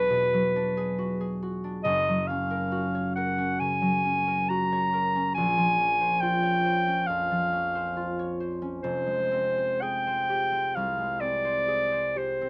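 This is an impressionist classical duo for clarinet and harp, pastoral and dreamy in mood, taken from a longer piece and moving in a rubato 4/4 that drifts between 58 and 71 BPM. The clarinet carries the melody up front from start to finish, its clear, vintage tone sitting in a classical solo style between B4 and Bb5. Beneath it, the concert harp supplies fingerpicked accompaniment with a mellow, ringing acoustic sound that reaches from a deep E1 up to Db5, also placed close and forward. The harmony floats through rich extended chords, opening on E9 and shifting to Gbadd9 at 1.8 seconds, then Bbm9 at 5.3 seconds before settling on Fmadd9. Recorded with close, detailed microphones and very little reverb, the pair sounds intimate and immediate across the 12.5-second passage.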